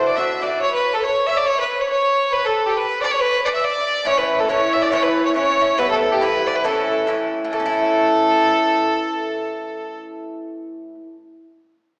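Heard through a small speaker in a reverberant church or concert hall, this lively, cheerful Celtic polka excerpt moves at 139 BPM in 2/4 with a light swing, in A mixolydian. A bright, biting fiddle with light vibrato carries the melody up front, while a second fiddle with a reedy, gut-string tone plays a supporting line alongside it from the start. A metallic, double-strung Irish bouzouki picks the accompaniment, dropping out at 0.6 seconds and returning at 4.0 seconds.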